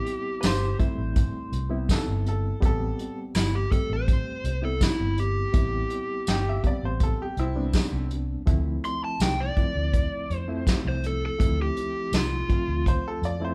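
Straight-eighth soul blues in A minor at 82 BPM, smoky and soulful, this short excerpt moves from Am7 to Dm7 at 8.5 seconds. An overdriven slide guitar carries the melody, its fingerpicked lines sitting between E4 and C6 with a warm, overdriven edge. Underneath, a reedy electric piano holds the accompaniment through a fast tremolo and light overdrive, while a bright upright piano adds a woody, slightly detuned second line with audible action noise, dropping out at 8.1 seconds and returning at 12.9 seconds. A vintage brush drum kit sits up front with a fat snare, tight kick, hi-hat and tambourine, its rolled-off top and pumping small-room sound giving the groove weight. A dark, foam-muted fingered electric bass supplies round, punchy low notes from G1 to F2, and the whole band plays live in one room inside a moderate large studio reverb.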